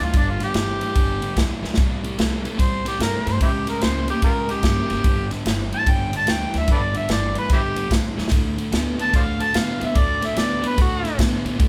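Electric blues shuffle with a rollicking, swaggering strut, cut from a longer piece and swung in four. An overdriven, gritty harmonica sits up front throughout, soloing in a jazz style with light vibrato, tongue slaps and scooped notes, its amplified tone edged with grit, until it drops out at 11.2 seconds. Beneath it, a picked semi-hollow electric guitar plays a low, overdriven riff with a hollow-body warmth, while a woody pizzicato upright bass on steel strings holds the bottom from the background. The big-band drum kit is punchy and up front, with an airy, polished sound, a medium-tuned snare, ride cymbal and kick, and it drops fills at 1.6 and 8.1 seconds. The band plays live together in one large studio, and a moderate reverb gives the whole take an open, roomy feel.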